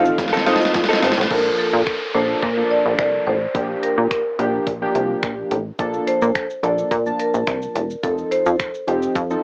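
Upbeat and euphoric, this dance-pop excerpt has a bright, retro feel, with a light room sound and the boxy, band-limited tone of a home cassette heard over AM radio. A vintage marimba played with medium hard mallets carries the melody throughout, while round, detuned analog keys with chorus and sidechain pumping provide the up-front accompaniment. A punchy, funky plucky analog bass also pumps under the groove, and a gated 80s digital drum machine drives the track with a thumpy kick, an overdriven gated snare, hi-hat, shaker, finger snaps and crash cymbal. During the brief opening, before the section change at 1.3 seconds, a drum fill sounds alongside a very quiet, dark string machine playing sustained cello chords, a clean, compressed direct-recorded electric guitar riff, and a faint, grainy egg shaker. An electronic downlifter then sweeps through from 1.3 to 5.8 seconds as the harmony moves from Bbmaj7 to Gm7/Bb, later returning through Bbmaj7 to F7.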